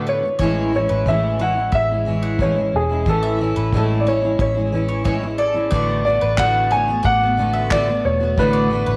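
A woody upright piano carries the melody from the very start, sitting up front beside a fingerpicked, double-tracked steel-string guitar with a full-bodied jumbo tone and fresh strings. A bowl-back mandolin slips in almost at once with picked arpeggios on its doubled strings, set low beneath the others. At 0.4 seconds a dark, round, foam-muted electric bass with a touch of transformer saturation joins a cloth-damped, thuddy drum kit whose tight kick and handclaps sound dry and rolled-off at the top. The harmony moves from Amaj7 to Bm7, giving this heartfelt, easy-going acoustic pop fragment a relaxed, straight feel. A moderate echo-chamber reverb adds studio depth, and the drums stop at 8.5 seconds while the other parts play on to the end of the cut.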